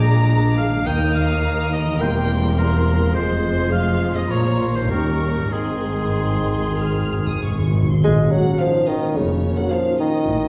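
A rich, bowed double bass section anchors this stormy, urgent orchestral passage in Ab major, which moves in 4/4 with a rubato feel around 93-108 BPM, alongside a cello section in the background and a dark bassoon. Above them, a lush symphonic violin section carries the melody with vibrato while an intense chamber violin section, a present, clear oboe, a pure, distant flute and a very quiet clarinet weave second lines. A very quiet viola section, a mellow French horn section, a ringing fingerpicked harp and round, soft-mallet timpani entering at 0.9 s and filling from 5.5 s complete the sound, all heard from further back in a reverberant recital hall in this cut from a longer piece.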